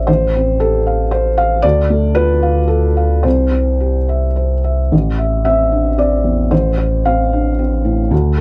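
Longing and melancholic, this short neoclassical fragment drifts in a rubato triple metre as a felt-muted upright piano plays soft, mellow accompaniment, its thick felt and audible action noise placed intimately up front. Beneath it, a pure sine sub bass holds deep, clean, smooth sustained notes across the full 8.4 seconds, adding a dark foundation. The dry, close recording has a 1970s studio character, and the harmony moves from Fadd9/A through Dm and C before shifting at 4.9 seconds to Am and F/A.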